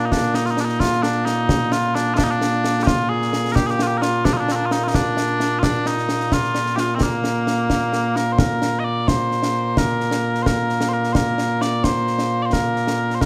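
Scottish traditional pipe music in a straight 6/8, this short excerpt moves at 87 dotted-quarter beats per minute in B-flat major, tuned slightly high at A4 = 443 Hz, with a stirring, proud character. Mellow small bagpipes carry the melody up front from the first moment, their sweet, continuous tone coloured by vibrato as the tune ranges from Bb2 up to Eb5. A concert snare drum and concert bass drum join at 0.1 seconds, sitting a little behind the pipes with an acoustic, small-room sound and dark cymbals. The tune falls into two parts, with a second section arriving at 8.4 seconds and running to the cut-off at 13.3 seconds. A moderate recital hall reverb gives the whole a gentle sense of space around the pipes and drums.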